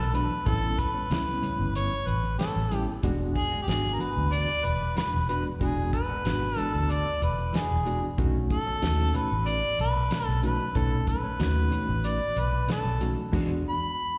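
A mellow harmonica leads this rollicking, gritty soul blues from the front of the mix, with a soft attack, gentle vibrato and scooped notes, its jazz-style solo line roughened by overdrive and trailed by slapback and tape echo. Beneath it, a barky, reedy electric piano plays accompaniment through its built-in speakers, lightly overdriven and treated with tremolo and slapback echo, while a clean, compressed electric guitar adds fingered stabs with slapback echo from the background. A vintage foam-muted fingered bass, round and punchy, sits up front, and an acoustic soul drum kit with a fat snare, tight kick and dark cymbals drives a straight-eighth feel at 93 BPM in 4/4, with a slight swing on the sixteenths. The harmony moves through A9, E9 and B9 in E mixolydian, arriving back on E9 at 13.3 seconds. Heard as a live gig through the venue's PA with recital hall reverb, this short cut from a longer piece gives the drums a pumping room sound and a rolled-off top.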